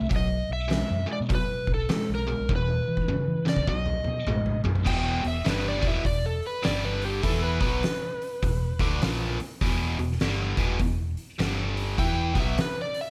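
Smoky, heavy blues rock and southern rock in a swung 4/4, where a biting, double-tracked electric guitar riff and a round, foam-muted vintage fingered bass play alongside an oversized, low-tuned drum kit with a fat snare and punchy kick that rolls through a fill from 2.5 seconds, while the overdriven slide guitar, played with fingerpicks, carries the melody from the start and moves into a solo at 4.9 seconds, all in a light reverb.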